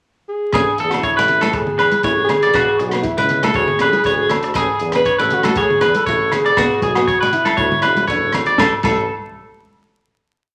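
Warm and carefree, this short highlife guitar band piece moves at 119 BPM in a straight 4/4 in A major, opening with a brief pickup before settling into chords that move through Amaj7, Eadd9 and D5. A dark alto saxophone carries the melody from 0.3 seconds, singing motif-based song phrases in a jazz style with vibrato, scooped notes and a smooth top. Up front, a twangy, slightly broken-up electric guitar plays an arpeggiated ostinato, while a bright, boxy parlour steel-string acoustic guitar with fresh strings picks its own repeating figure beneath it. In the background, a distant, roomy tuba plays a syncopated bass riff, and a compact cocktail drum kit with a punchy kick, high-tuned snare and rolled-off top keeps a highlife groove alongside ringing agogo bells on a low bell time line. Thin-skinned, damped congas played with hard hands join at 1.3 seconds in a loose pattern, and the whole piece sits in a moderate large studio reverb with a layer of vinyl crackle before ending on a final chord at 8.6 seconds.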